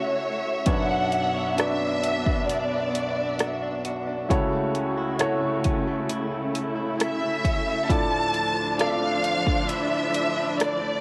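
Opening on a lush, vibrato-rich violin section carrying the melody over a woody, long-sustaining upright piano and distant bowed string chords, this emotional, hopeful pop ballad at 67 BPM in 4/4 brings in a clean, compressed electric guitar arpeggiating with analog delay in the background and an up-front deep house drum kit of deep kick, hi-hat and rim click at 0.7 seconds, the violins and drums tinted by cassette tape within a moderate studio reverb on a home cassette recording as the harmony moves from Amaj7/C# through Bmadd9 and F#m7/C# to Dmadd9.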